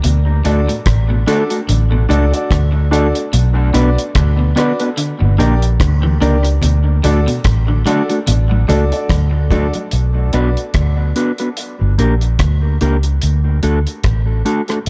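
Dub reggae with a spacious, hazy mood and a swung 16th-note feel, heard in a short cut from a longer piece, its echo-heavy mix bathed in light studio reverb. A round, punchy, foam-muted fingered bass sits up front over a dry, smooth drum kit of tight kick, hi-hat and rim click, while a mellow electric guitar plays accompaniment and a boxy grand piano adds stabs, both carrying dub echo. A bright, twangy electric guitar plays picked arpeggios with echo in the background until 8.8 s, and very quiet congas played with soft hands come in from 6.6 s to 9.9 s.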